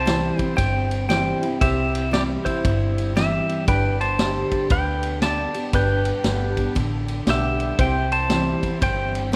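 A clean, compressed pedal steel guitar sits up front with the melody, played with fingerpicks and sliding into volume swells in this down-home, heartfelt honky-tonk and classic country excerpt in C major, swinging at 117 BPM in 4/4 over a simple move from C to G and back to C at 7.8 seconds. A full-bodied dreadnought acoustic guitar picks the accompaniment alongside a clear, very quiet grand piano, while a lush, distant string section holds bowed chords with vibrato. Underneath, a round, foam-muted fingered electric bass and a vintage drum kit, entering at 0.1 seconds with punchy kick, high-tuned snare and dark ride cymbal, sit in light reverb.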